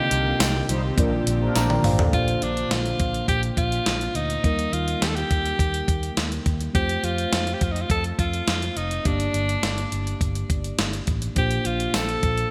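An edgy, forceful alto saxophone carries the melody up front with scooped notes and a trail of delay, in a romantic, uplifting slice of 1980s-style pop cut from a longer piece. A mellow tine electric piano accompanies throughout, a round, punchy fingered bass holds the low end, and a thumpy 12-bit drum machine with gated reverb sits up front. A faint, cloudy granular pad and chorused synth brass stabs color only the opening seconds, overlapping a drum fill that begins at 1.6 seconds, a jingly tambourine appears briefly, and the bright digital production is bathed in a lush hall reverb.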